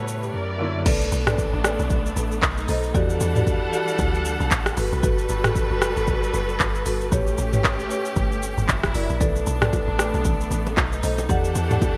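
This soulful, hypnotic amapiano excerpt in B minor at 115 BPM opens with a natural baby grand piano touched by subtle chorus, expressive bowed strings with vibrato and portamento, a punchy sine sub bass, and an up-front afro-pop kit with a deep kick, crisp hats, handclaps, rim clicks, shaker, toms and crash carrying vintage 12-bit grit; after a brief silent gap, the drop lands at 0.9 s with a round, percussive log drum bass and woody marimba stabs trailing delay over chords moving from Bm7 through Em11, Gmaj9 and A9, while very quiet, bright congas and bongos join at 9.2 s, the whole mix set in a lush hall reverb with a bright 1980s-style digital sheen.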